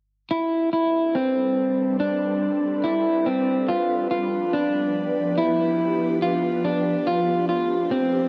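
A slightly broken-up electric guitar opens this melancholic, haunting dream pop excerpt at 0.3 seconds, playing fingered arpeggios in a dark, compressed tone with subtle chorus and analog delay. An ethereal, airy pad joins at 0.9 seconds with sustained chords, its detuned sawtooth and triangle layers, noise layer and slow attack given extra shimmer by ensemble chorus, built-in reverb and phaser. Both parts sit up front, the guitar the louder of the two, and carry on together until the end at 8.3 seconds. The harmony moves from Am11 to G7 at 3.7 seconds and then to F69. A moderate, lush hall reverb surrounds the pair, yet the hardware recording itself stays dry and gritty.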